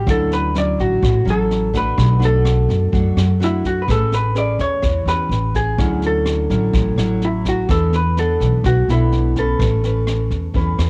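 Bossa nova in A major at 126 BPM, this short cut from a longer piece has a romantic, relaxed mood and a small-room, home-cassette character. A dark, clean hollow-body jazz guitar carries the melody up front, its picked, compressed tone colored by cassette tape. Underneath, a fingerpicked nylon-string guitar with fresh strings supplies a classical-style accompaniment, also passed through tape, while a woody, pizzicato upright bass with steel strings sits up front in the low register. A jazz brush drum kit enters at 0.1 seconds with a boomy kick, rim clicks and a high-tuned snare, its natural studio-room sound likewise given a tape tint. The harmony drifts through lush chords such as Dmaj9, Bm7, Amaj9 and E7sus4 before settling on Aadd9 near 9.6 seconds.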